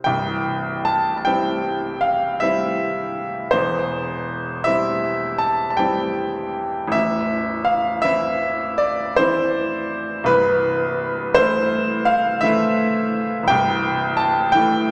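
A clear, intimate baby grand piano carries this tender, dreamy romantic nocturne alone, sitting up front with audible action noise and long sustain across a range from A0 to A5. In C major and 9/8 at a rubato 48-58 BPM, the harmony drifts from C through C/E to A minor and Am/C. A wet recital hall reverb surrounds the piano in this short passage cut from a longer piece, lasting to 14.9 seconds.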